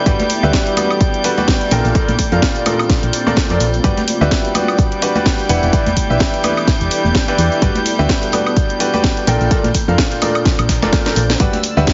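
Piano house at 127 BPM in G major, uplifting and feel-good, with a swung sixteenth-note groove, heard in an excerpt cut from a longer piece. A bright, brilliant baby grand piano sits up front playing a riff with delay and sidechain pumping, over chords moving through Gmaj7, Bbmaj7 and Em7. A punchy, round FM bass with tube saturation and sidechain pumping drives the low end beside a tape-warm electronic kick re-recorded in a small room, while a house drum kit adds a cracking snare, hi-hat, shaker and woodblock. Beneath them, a very quiet, gritty sampler-style kit contributes hi-hat and snare, and close, acoustic tambourine and congas sit in the background. A warm, bowed violin section holds sustained chords with a soft attack and sidechain pumping, and a very quiet granular pad drifts as a cloudy, detuned, evolving texture. The mix carries light digital ambience and a heavily compressed, radio-like sound with a dulled top, and a drum fill arrives at 10.9 seconds.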